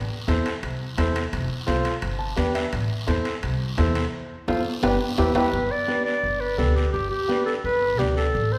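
A thumpy, woody pizzicato upright bass on gut strings opens this fiery, driving cumbia fragment at 171 BPM, joined at 0.3 seconds by a clear, intimate upright piano with audible action noise, ringing high-tuned congas struck with hard hands, a raspy close guiro and metal-shell timbales sitting in the background, all moving through Am, F and G with a piano fill and a band accent before a soft-attack classical clarinet takes an up-front solo melody at 5.2 seconds over an Em-to-G turn, the whole bathed in the wet, lingering reverb of a recital hall.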